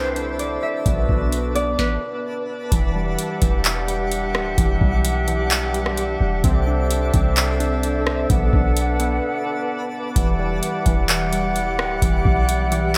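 Atmospheric cloud-rap hip hop at 129 BPM in a half-time 4/4 feel, this melancholic, ethereal excerpt sits in E minor with tuning set to A4 = 436 Hz, moving through C69, Bm7 and Em9 chords. A dark, distant woodwind section holds sustained chords with soft attack and vibrato, pumping from sidechain and filtered, while warbly lo-fi synth keys spin nostalgic, detuned arpeggios through chorus, delay and a low-pass filter. A fingerpicked concert harp carries a ringing melody only until 3.8 seconds, and a twinkling granular texture adds a sparkling, octave-up shimmer high above, bathed in its own reverb. Up front, a clean, sine-like 808-style bass delivers deep, boomy notes, and a booming analog drum machine supplies a deep kick, crisp snare, handclaps, rim click and metallic hi-hats, re-recorded in a large room. The opening is shaped by a filter sweep and a stop between 1.8 and 2.7 seconds, and a brief break arrives at 9.2 seconds, all under light reverb.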